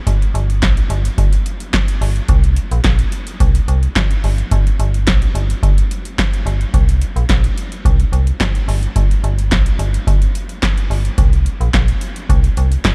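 An electro analog drum machine and a metallic FM bass start together at 0.1 s, setting up a slick, funky groove in an early-eighties boogie funk style with a straight 4/4 feel. The drum machine brings a deep kick, a punchy snare, handclaps and hi-hat, its analog tone given a tape-warm character and the slight air of being re-recorded in a small room. The bass sits low, between G1 and C2, with a digital FM tone that is metallic yet mellow, each note striking with a fast attack and then decaying. Both parts are placed up front and stay together until 12.9 s. The overall sound is dry and close, with little reverb, in this short cut from a longer piece.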